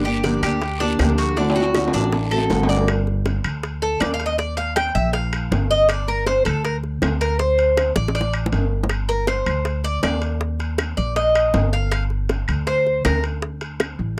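Nostalgic and danceable, this brisk 159 BPM Cuban son and guajira excerpt in G minor opens with a boxy fingerpicked parlour guitar and a raspy guiro playing alongside tres arpeggios, bass and percussion, with a drum fill over Gm7 and D7. From 2.9 s the bright, metallic double-stringed Cuban tres takes an up-front solo over a thumpy gut-string upright bass, tight high-tuned bongos, ringing distant timbales and woody background claves, all in a dry, close 1970s-style studio sound.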